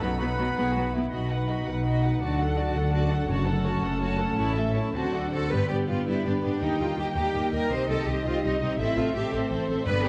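Mellow trumpet stabs mark the start of this heroic, adventurous film-score excerpt in a straight 6/8 at 110 BPM, where a woody violin melody sits behind lush, warm violins, distant violas, rich cellos and an up-front, expressive double bass section with portamento, while dark horns sustain chords, a ringing harp arpeggiates, an airy flute and a very quiet clarinet trace second lines until 5.3 s, hard-mallet timpani strike at 3.3 s, and the harmony settles into G mixolydian under a wet scoring-stage reverb.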